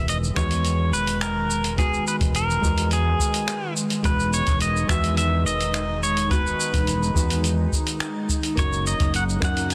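A dense, heavily limited modern mix with light reverb carries this relaxed, sunny sunset chillout excerpt in E lydian at 106 BPM, straight 4/4, resting on Emaj7 before moving to D#m7/F# at 8.6 seconds. Up front, a clean pedal steel guitar played with fingerpicks sings the melody with slide and volume swells through tape echo. A dark, thumb-plucked nylon-string guitar adds accompaniment roughened by vintage 12-bit sampler grit and tape echo, an airy, breathy, detuned pad holds chorused chords, and underneath sit a growly overdriven electric bass with tube saturation, a deep, tape-warm electronic kick entering at 0.4 seconds, and a gritty sampler-style soul kit of cabasa, finger snaps and hi-hat with soft clipping on the snare.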